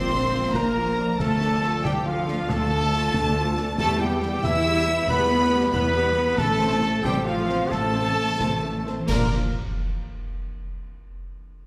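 This cinematic, heroic adventure cue is cut from a longer piece and moves at 91 BPM in 12/8 with uneven beats, sounding triumphant and soaring in Bb lydian. A warm, roomy trumpet section sits up front with classical-style stabs, while two lush violin sections carry the melody and a second line with vibrato from the background. A dark viola section with portamento supplies accompaniment, and the cello and double bass sections, the basses clear and focused, anchor the low end. A very quiet, bright concert harp rings out arpeggios, and from 0.5 seconds a concert snare drum, bass drum and bright clash cymbals play in a live room. The tempo slows from 4.7 seconds, and at 9.1 seconds a band accent lands on Bb, marked by a close, dry hit of dark clash cymbals and bass drum plus a brief, very quiet timpani stroke with hard mallets, all within a moderate scoring-stage reverb.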